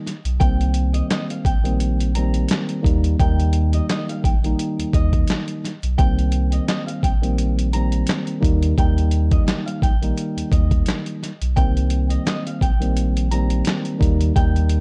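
Tough and reflective, this boom-bap hip-hop cut rides a 55% swung 16th groove at 86 BPM in C minor, moving between Cm7 and Eb over a dark, warm production with digital ambience. A gritty, pitched-down sampler-style drum kit sits up front with a thumpy kick, medium-tuned snare, hi-hat and handclaps, while a deep sine-and-triangle sub bass with octave holds sustained low notes. A mellow, clean tine electric piano supplies filtered accompaniment, and a fingerpicked acoustic flamenco guitar carries the high melody, its finger squeaks audible through the filtering in this excerpt from a longer piece.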